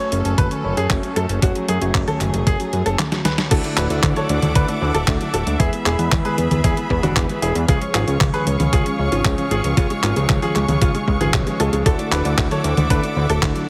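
Italo disco with a danceable, melodramatic mood, this excerpt pairs a clear grand piano melody touched by digital delay with rich, smooth bowed strings, background tine electric piano stabs and a fat, nasal analog bass up front over a thumpy electronic kick and a detuned 8-bit drum machine of congas, handclaps, hi-hat, snare and crash, rolling through a drum fill at 3.0 seconds before a very quiet, warbly, dusty pluck adds arpeggios from 3.5 seconds, all heard in a heavily compressed, radio-like sound with light reverb.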